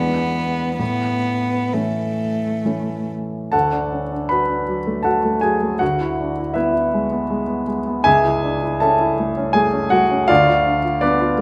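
A cello and a concert grand piano open together in a tender, lyrical romantic duo in A major, moving in a rubato 3/4 at roughly 63-84 BPM. The bowed cello sings its melody in a close, intimate voice, played sul tasto with light vibrato, a soft attack and an airy tone, keeping to a narrow span before falling silent at 3.1 s. From there the piano carries on alone until 11.4 s, its warm, polished sound reaching from deep bass up into the treble, with long sustain and audible action noise. The harmony moves from E7 to A, then turns to D at 3.5 s and continues through E7/D, A/C# and Bdim/D. Both instruments sit up front within a recital hall reverb that gives this cut from a longer piece a gentle, wet glow.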